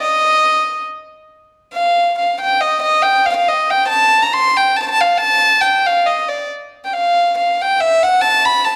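A lilting 3/4 pulse at 139 BPM with a gently swung feel gives this whirling, nostalgic musette fragment its turn, cut from a longer piece and tuned slightly low at A4 = 439 Hz. A lone bowed violin carries everything from 0.0 to 8.8 s, sitting up front and close in a reedy, nasal, gut-string voice with an airy bow and period style, moving between D5 and C6. After a brief opening phrase, a new passage begins at 1.3 s, all set in a moderate recital-hall reverb.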